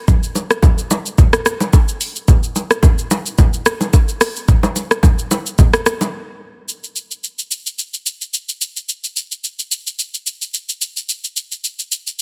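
A smooth, electronic R&B drum kit and bright acoustic congas and bongos open this soulful, relaxed amapiano fragment at 109 BPM with a gentle 16th-note swing, the up-front kit blending a soft kick, warm hi-hats, rim click and shaker alongside the hard-handed hand drums. The small-room congas and bongos drop out at 6.1 s for a brief break, after which the kit carries the second section alone until 12.2 s. The sound is dry, with a dense, heavily limited modern master.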